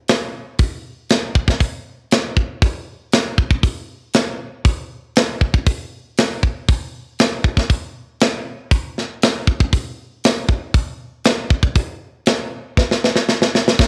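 A straight 4/4 rock groove drives this heavy, driving excerpt, carried by a tight metal drum kit of hi-hat, tight kick and a medium-tuned snare that sits mid-forward and up front in an acoustic studio room. The home cassette recording adds a light reverb, and a drum fill at 12.8 seconds pushes the section toward its cut-off end.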